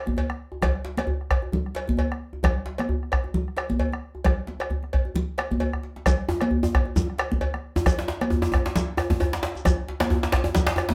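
West African traditional drum ensemble excerpt at 133 BPM with a festive, driving swing, built on a deep, dark bombo up front, thick-skinned high-tuned congas struck with hard hands, a medium-tuned djembe and a metallic, saturated cowbell, until a drum fill around 5.7 seconds opens a new section where a grainy, mellow shekere and a second djembe with metal rattles join at about 6.1 and 6.3 seconds, all set in moderate studio reverb.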